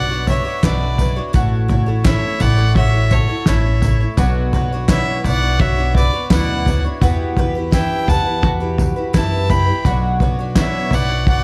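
A clear, earthy bowed fiddle with light vibrato carries the melody in this wistful, bittersweet stretch of indie folk with a building arrangement, shadowed by a second fiddle with a nasal, reedy gut-string tone that sounds distant. Beneath them, a bright, shimmering octave-doubled twelve-string acoustic guitar picks the accompaniment, a mellow, woody mandolin plays arpeggios through analog delay, and a pizzicato upright bass holds the low end. A cloth-damped, thuddy drum kit with a fat snare, tight kick and gritty, saturated, muffled tone arrives at 0.3 s alongside a jingly tambourine in the background, while very quiet, crisp group handclaps join at 0.6 s, all in a dark, dry production.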